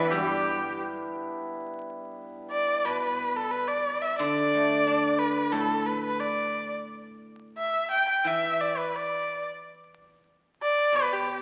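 Crackling like a very old 78 rpm record and set in a reverberant recital hall, this pastoral, festive passage of Chinese traditional chamber music places a boxy, focused erhu melody with vibrato and portamento up front over bright, silvery guzheng accompaniment in a rubato 2/4, while a faint, breathy bamboo xiao and a clear, smooth cello sound only until 0.8 s and a mellow, shimmering hammered dulcimer rings until 4.9 s.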